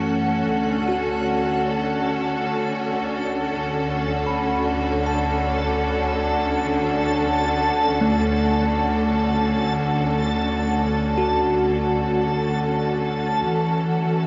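Drifting in free time, this reflective, melancholic ambient fragment from a longer piece rests on bright, bowed symphonic strings holding sustained chords up front, while a bell-like, clean tine electric piano spins arpeggios through analog chorus and tape echo, a lush, bowed double bass section with tube saturation anchors the low end until 13.3 seconds, and a reversed, granular, dreamy texture hovers high above, the whole mix sitting in a long shimmer reverb and the warbling pitch drift of worn cassette tape as the harmony moves from F#m7 to Dmaj7 and returns to F#m7 at 13.4 seconds.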